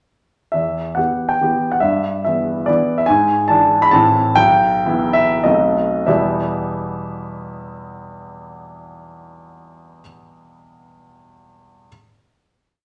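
Wistful and nostalgic, this brief romantic piece for solo grand piano is a triple-time dance with dotted rhythms, played with free rubato and slowing down from 2.5 to 6.1 seconds. The intimate, up-front piano carries a single-line melody over bass and chords that stress the second or third beat, moving through a short phrase to a final chord that arrives at 6.1 seconds. Its natural tone, with audible action noise, sits in a wet, large studio reverb.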